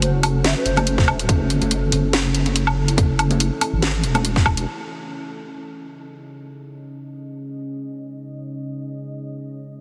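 A deep, saturated wobble bass sits up front in this heavy, brooding deep dubstep excerpt at 142 BPM in C# harmonic minor, with a swung, half-time feel driven by a tight electronic kick entering at 1.0 s and a garage kit of cracking snare, bright hats and woodblock. Soft, ringing high-tuned congas with dub echo stay in the background, a breathy, hollow ney with dub echo offers a brief phrase at the start, and a dark, detuned sawtooth pad with chorus and reverb sustains chords moving from F#m to C#5, playing alone after 4.7 s. The mix carries light digital ambience and a heavily compressed, radio-like sound.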